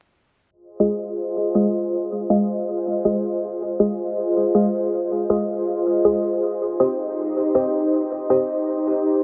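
This lightly swung, frenetic and atmospheric drum and bass excerpt features a bright, nasal, detuned sawtooth chord stab, band-passed and up front with chorus, phaser and dub echo, firing fast-attack, decaying hits from 0.8 to 8.4 seconds as a filter sweep shapes it, moving from Fm7 to Cm in a long plate reverb with vinyl crackle, a low-pass filter and a dense, heavily limited master.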